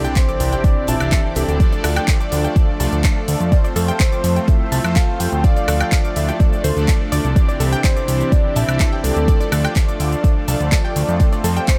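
Emotional and expansive, this progressive house excerpt opens on a very quiet sub drop as a fat, thick sawtooth-and-square analog bass with a moving filter sweep pumps up front, joined at 0.2 s by a deep, layered electronic kick, while a lush, warbling unison pad, a round background analog pluck arpeggio and smooth, phased supersaw stabs pump in the mix, a deep house kit adds dark hats, cabasa, handclaps and woodblock, an octave-layered, wave-folded synth lead carries the melody with chorus and vibrato, a small-room acoustic jazz kit is barely audible, and light reverb settles over the Cadd9 and Dm changes.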